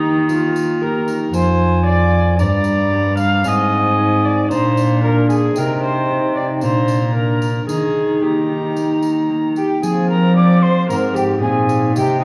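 This renaissance-style consort dance is rustic and courtly, moving at 114 BPM in a straight 4/4 and set in F dorian, tuned to A4 = 442 Hz. An alto recorder carries the melody high in its range with a pure, woody tone, gentle vibrato and a crisp, chiffy attack, sounding somewhat distant. Beneath it a single bowed viola plays a second line, and a single bowed cello holds the bass, both with gut-string, period-style tone that leans reedy; the viola has light vibrato and the cello a nasal edge. A concert harp rings in the background with fingerpicked accompaniment, while a solo trombone adds smooth, mellow support in its middle register. A jingly, close and dry tambourine enters at 0.3 s. The harmony moves through chords such as Eb, Fm, Gm, Ab, Bb and Cm, the opening phrase returns at 9.8 s, and the dark production sits in a wet recital-hall reverb until the excerpt is cut off at 12.2 s.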